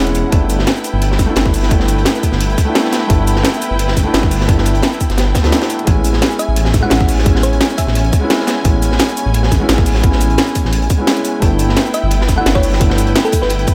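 A lightly reverberant small-room sound frames this uplifting liquid drum and bass excerpt, where a deep, rumbling detuned saw bass sits up front beneath a warm grand piano with tape echo and a lush, bowed string section that pumps under sidechain compression over G6 and Amaj7 chords. A tight, overdriven electronic kick, a drum and bass kit with cracking snare, bright hats and cabasa, and a gritty breakbeat kit with a high-tuned snare set further back make up the drums. At 6.4 s and again at 11.9 s, a round, tine-like thumb-piano-like synth pluck with chorus and tape echo adds short melodic phrases.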